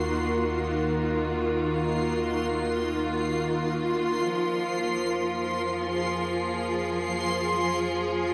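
This ambient piece moves in free time, a short stretch cut from a longer work and set in Eb dorian, with a reflective, spacious mood. A rich studio string section sits up front, holding bowed, sustained chords in a smooth, even ensemble sound with light vibrato, and it moves from Ebmadd9 to Fm at 4.3 seconds. Beneath it, a deep, round sine sub bass holds low sustained notes and fades out over the whole 8.3 seconds. High above, a reversed, granular texture swells with a soft attack and long release, its bright, dreamy tone carrying its own built-in reverb. Shimmer reverb glows on both the strings and the texture, and the whole recording sits in a vast, echoing space with a huge, wet reverb tail of 8.6 seconds.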